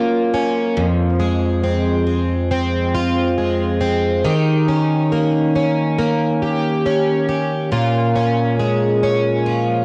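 A picked, plugged-in twelve-string acoustic guitar plays alone from the start, its full-bodied, octave-doubled dreadnought tone shimmering up front through analog chorus, tape echo and a wet spring reverb. This ethereal, melancholic dream pop fragment, cut from a longer piece, moves from Gbmaj7 and Fm into Eb7 at 4.2 seconds before settling on Bbm7. The piece was recorded at home on cassette, which lends the guitar's warm tone a tape-coloured character.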